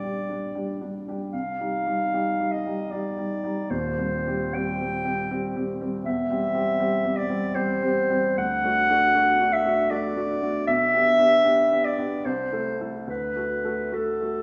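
This romantic classical duo for clarinet and grand piano is a short, lyrical cut from a longer piece, moving at 77 BPM in 3/4 with uneven beats and a free, rubato pulse. The clarinet carries the melody from start to finish, its dark, distant tone singing in the range from A4 to G5 and sitting up front as the solo voice. Beneath it, a baby grand piano supplies the accompaniment across a deep span from Eb1 to A4, its sound warm and open with long sustain. The harmony starts on Gm/Bb and passes through Cm, C/E and D before settling toward G/B, Am/C and a closing D at 13.1 seconds. A moderate concert hall reverb of about 1.9 seconds gives the clarinet a roomy glow, and the tuning rests at A4 = 441 Hz.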